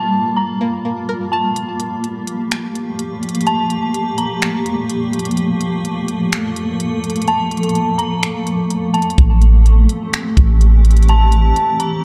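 Atmospheric cloud-rap in G dorian, this melancholic, hazy hip hop excerpt moves at 126 BPM in 4/4 with a half-time feel. A granular cloud pad holds sustained chords throughout, a blurred, full-bodied bed with a slow attack, sidechain pumping and its own reverb. It opens on Gm9 and shifts to Am7 at 9.2 seconds. In the opening stretch a twangy, string-like resonator pluck plays arpeggios under a filter sweep, coated in chorus and tape echo. From 1.6 seconds a trap drum kit enters up front with crisp hats and finger snaps, its knocking kick held back until 9.2 seconds, when a deep, round 808-style bass arrives on A1. Above it all, an eerie, inharmonic FM bell warbles through chorus, phaser and tape echo on a high, narrow melody, pausing briefly mid-way before returning, all set in light reverb.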